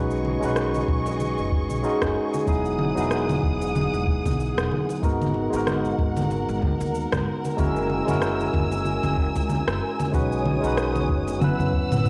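Sunset chillout at 94 BPM in 4/4, with a lazy swing on the sixteenths, this short cut from a longer piece feels warm and wistful. An overdriven tine electric piano sits up front, barky and gritty through a combo amp, colored by 12-bit sampler grit, cassette tape, analog delay and plate reverb as it carries the chords from B6/9 through Emaj9, G#m9 and F#9 before turning to F#7sus4. Behind it, a dark, lush studio string section holds bowed, vibrato-laden sustained chords with a smooth top, while a woody, thumpy pizzicato upright bass on gut strings adds tube saturation underneath. The rhythm comes from a produced, tape-softened R&B kit with cabasa, rim click and toms, re-recorded in a large room, joined at 0.2 seconds by very quiet, bright congas played with hard hands and at 0.9 seconds by a deep analog electronic kick. A drum fill at 11.4 seconds closes the passage, and the whole take has the intimate booth ambience of a home recording on cassette.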